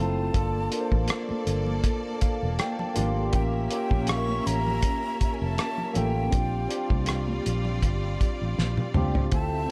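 A gently swung sixteenth-note groove in four sets the pace for this lush, 1970s-style soul passage, cut from a longer piece, with a smooth, silky mood. Cloth-damped drums, thuddy and gritty with a fat snare and tight kick, sit up front alongside a round, punchy, foam-muted fingered electric bass, while very quiet, high-tuned congas add a thin-skinned tap beneath them. A barky tine electric piano played through a combo amp, with analog chorus, carries the accompaniment and breaks into a fill around 1.8 seconds. A breathy jazz flute floats the melody with soft attack and an unsteady vibrato, joined by a clear, focused studio string section playing a bowed second line. The chords move from Gm9 through A7b9b13 to Bb69, a drum fill arrives near 8.6 seconds, and a shimmering sawtooth string machine slips into the background at 9.3 seconds, all wrapped in a dark production with light reverb and small room ambience.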